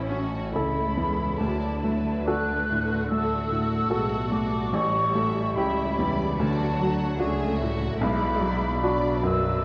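A clear, up-front baby grand piano carries the melody from the first moment of this brooding, passionate romantic movement for piano and orchestra at 73 BPM with a rubato feel, alongside a smooth violin section also playing melody in the background, a richer violin section and a pure, distant flute group on second lines, lush bowed violas with a soft attack, focused cellos and expressive double basses beneath, all cut from a longer piece and moving from A through D and A7 to Bm in a moderate scoring-stage reverb with the worn, warbling pitch drift of old cassette tape.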